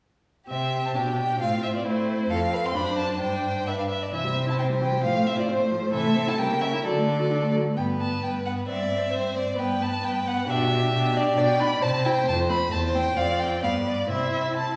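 A spirited, cheerful classical-period string quartet movement at a quick 133 BPM in 2/4, moving from C major through G major and back, cut from a longer piece, with an up-front, smooth first violin carrying the vibrato-laden melody over a rich second violin line, a close, expressive viola accompaniment marked by portamento, and an even, up-front cello bass, all heard from further back in a wet recital hall.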